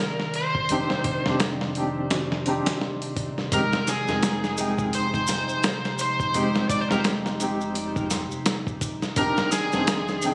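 A bright, overdriven slide guitar carries the melody from the first moment, set up front over a felt-muted upright piano whose soft, mellow chords shimmer with tremolo, both roughened by vintage 12-bit sampler grit and tape echo. A warbling, nostalgic pad sustains chords beneath them, its detuned, chorused tone bathed in built-in reverb. At 0.2 seconds a dusty, sampler-style drum kit enters up front with a thumpy kick, medium-tuned snare and hi-hat, swinging the 16ths in a slow 85 BPM trip hop groove in 4/4. A round, deep analog bass settles on a low F from 0.7 seconds, and maracas with group handclaps join in the background at 3.5 seconds as the harmony moves from Cmadd9/F to Fm7 in F dorian. The dark, cinematic mood is framed by light digital ambience and compression in this short cut from a longer piece, which was recorded on a phone in the room.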